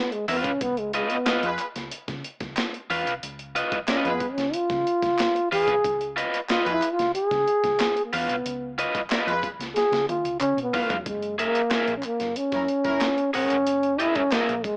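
Funk with a strutting feel, where a breathy, intimate trombone takes an up-front solo until 11.1 seconds, backed by a clear, loose horn section, a crunchy guitar with harmonic tremolo, a gritty overdriven breakbeat kit with a thumpy kick that plays a fill from 9.8 seconds, a round hollow-body bass and very quiet group handclaps, all within light reverb and an AM radio tone.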